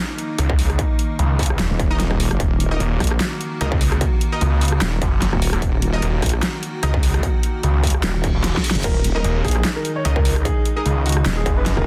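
Heavy wobble dubstep in a chaotic, half-time swing, where a snarling, growling distorted saw bass and an up-front wobbling bass churn beneath a distorted electronic kick and a dubstep kit with a huge snare and bright hats, while an evolving, morphing wavetable pad pumps in the background, bold orchestra-hit-like synth stabs ring with delay, a reverse cymbal at 8.2 seconds and a drum fill at 8.4 seconds usher in a concert grand piano melody with deep bass and delay at 8.8 seconds, all in a dense, heavily limited, dry mix.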